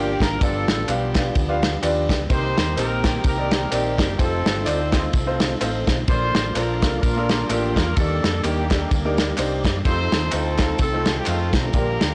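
Blown-out and overdriven with light reverb and a dulled top end, this brief cut from a jubilant, soulful uptempo gospel piece swings along as a tight, vintage horn section carries the melody over clear, smooth grand piano accompaniment, a very quiet tonewheel organ holding chords through a rotary speaker, a round, punchy fingered electric bass, an up-front soul drum kit with dark cymbals and a tight kick, and tambourine, egg shaker and group handclaps sitting in the background.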